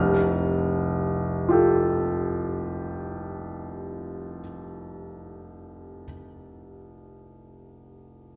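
A clear, intimate baby grand piano carries this luminous, dreamy fragment of impressionist classical music on its own, spanning F1 to F6 from 0.0 to 8.4 seconds. Its natural tone rings with long sustain, and the noise of the action is audible as the instrument sits up front. A wet scoring-stage reverb, heard from further back in the room, surrounds it in a hazy glow, and the fragment is cut from a longer piece.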